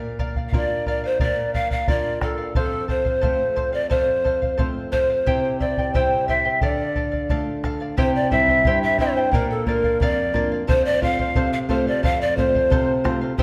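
In a straight 2/4 at 89 BPM, this festive yet wistful Andean folk excerpt pairs a bright, shimmering fingerpicked charango with double strings and a fingerpicked flamenco guitar marked by audible finger squeak, joined at 0.2 s by a deep, dark bombo heard close and dry, while from 0.5 s breathy large cane pan pipes carry the melody up front with vibrato, soft chiffy attacks and a warm tone, the ensemble set in a wet recital hall as the chords move through Bb, F, C and Dm.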